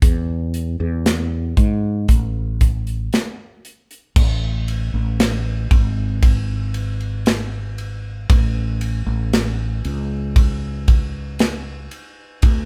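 The sound is lightly reverberant, like a band playing live together in one room, with the drum kit and bass both placed up front. This short pop ballad fragment, cut from a longer piece, moves at an unhurried pace in a straight four-beat feel, and its mood is hopeful and heartfelt. A mellow fretless electric bass carries the low end throughout, its tone dark, round and punchy, heard direct. An acoustic studio drum kit, set in a small room, plays across the full 12.7 seconds with kick, medium-tuned snare, hi-hat, ride and crash cymbal, the kick sounding tight. The same passage is stated twice, with its repeat beginning at 4.2 seconds, giving the rhythm section a steady, sincere foundation.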